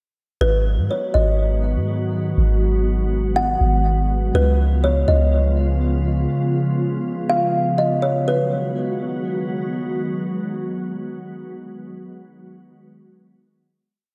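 A woody kalimba loops a sparse, plucked melody through diffuse ambient delay in this spacious, hazy piece of atmospheric cloud-rap with a half-time feel, over a glassy, ethereal FM pad with ensemble chorus and a round, soft 808-style bass whose long sub-bass notes slide in pitch until 6.3 seconds, all in a dreamy, reverb-soaked mix that settles onto a final sustained chord at 8.3 seconds.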